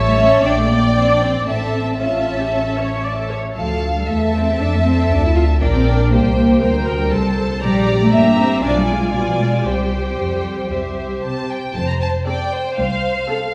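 A distant, lush first violin section carries the high melody over a warm second violin line, smooth violas, a focused cello section and a rich, up-front double bass section in this restless, stormy classical-period movement for string orchestra at 117 BPM, cut from a longer piece, with vibrato throughout, a recital hall's reverberant glow heard from further back in the room, and harmony that moves through a diminished chord and a suspended C before settling on F at 11.8 seconds.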